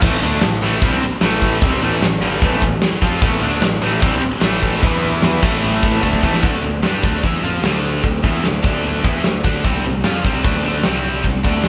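A huge arena drum kit sits up front in this driving, menacing hard rock cut, its fat snare, punchy kick and bright cymbals filling a pumping hall-like room, with a drum fill at 6.0 s. Behind it, two tight distorted guitars grind out riffs alongside a raw, double-tracked garage guitar with overdrive and spring reverb, which drops out at 6.4 s as the music moves into a new section. A fuzz-laden picked electric bass, direct and amped, anchors the low end, and the whole band sounds as if it is playing live together in one large studio.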